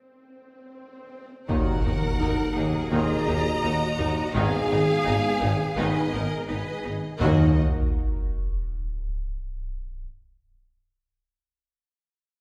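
Tense and futuristic, this cut from a longer hybrid orchestral and electronic film score moves at 84 BPM in a straight 4/4, centred on Eb minor. Up-front electronic sound effects open it, with a swell rising into an impact at 1.5 seconds, where the full ensemble enters over Ebm, shifts to Abm at 4.3 seconds, and returns to Ebm as a second impact lands at 7.2 seconds. A focused, close violin section carries the melody above a second violin line with a soft attack and smooth top, while a lush viola section fills in accompaniment in the background. Sustained chords come from a bright, tight trombone section, a very quiet close-miked French horn section, and a shimmering, retro pulse-width pad with chorus and a dark, evolving character. A twangy, warbling resonator pluck with a vintage edge plays very quiet arpeggios, and the bass is anchored by an intense double bass section, a solo tuba and a cello section that reaches high into its range. 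Everything sits in a wet recital hall reverb that gives the orchestra the ring of a church or concert hall, and the sound effects carry on alone after the ensemble stops near 7.6 seconds.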